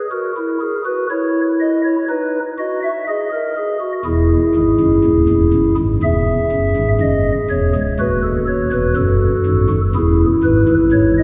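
Bathed in a long cathedral reverb that rings for 5.2 seconds, this stately, elegant fragment of a baroque-style four-part fugue in E major features a solo pipe organ on a soft, hollow stopped flute with audible chiff, sitting up front and spanning C#1 to E5 at an unhurried 61 BPM in 4/4 as the harmony arrives on E at 4.1 and again at 10.0 seconds.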